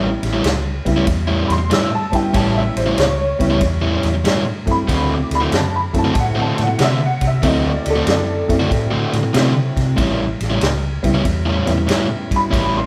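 A stone room's reverb wraps this live-sounding band, giving the short cut from a longer piece a roomy, echoing sheen. It is a swaggering, laid-back electric blues shuffle at 94 BPM in 4/4, swung on the eighth notes and set in A mixolydian, moving from A7 to D7 at 4.9 seconds and back to A7 at 10.0 seconds. Up front, an overdriven semi-hollow guitar plays the picked riff in a low-to-middle register with a hollow-body growl. A detuned honky-tonk upright piano adds jangly, woody, boxy accompaniment across a broad span of the keyboard. Underneath, a foam-muted fingered electric bass sounds dark, round and punchy. A vintage acoustic drum kit enters at 0.2 seconds with a firm kick, a medium-tuned snare and dusky ride cymbal, its top end rolled off for a natural studio-room feel.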